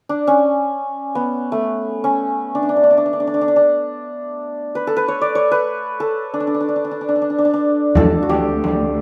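Persian modal ensemble music in free time, festive and warm in mood, where a shimmering, ringing hammered santur carries the melody up front from the start, joined near 7.9 seconds by a distant bowed cello section holding a clear, vibrato drone on a low D, and at 8.0 seconds by a deep frame drum, all in moderate studio reverb in this short cut from a longer piece.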